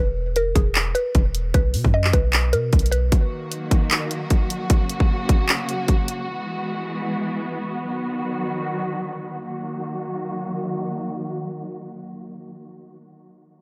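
A dark, melancholic half-time trap fragment opens on a woody, round mallet-like synth pluck treated with chorus, phaser, low-pass filter and tape echo, over a deep, boomy 808-style bass, with an up-front trap drum kit of hard-clipped kick, bright hi-hats and handclaps joining at 0.4 seconds in a fairly dry space. At 3.1 seconds the pluck and bass drop away and a lush, bowed symphonic string section enters alongside the drums with sustained chords, vibrato and a smooth top, carrying a filter sweep until 9.4 seconds.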